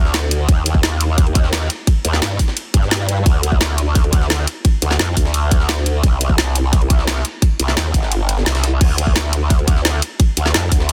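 Dense, heavily limited and nearly dry, this tense, futuristic excerpt of dark technical drum and bass at 173 BPM is driven by an up-front, growling, detuned bass with overdrive, chorus and sidechain pumping, a tight electronic kick that enters at 0.5 s and drops out from 8.1 to 8.8 s, a layered electronic kit with a woody snare, bright hi-hats and crash cymbal, and a very quiet, gritty sampler-style breakbeat kit of ride cymbal and snare underneath.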